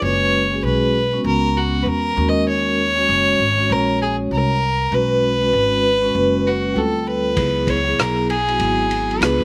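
Dry with barely any reverb, this nocturnal, cool jazz-hop excerpt moves at 98 BPM with a swung 16th feel in C# dorian, passing from F#7sus4 through D#m7, B5 and Dm7 before landing on C#m7. Up front, a single bowed fiddle carries the melody with a nasal, reedy gut-string tone and a slapback echo, while a vibraphone played with soft mallets rings out a mellow, airy accompaniment over slow motor vibrato and a woody pizzicato upright bass. At 7.4 s a muffled, lo-fi vintage drum kit joins in the background with a tight kick, rim click, hi-hat and dark ride cymbal.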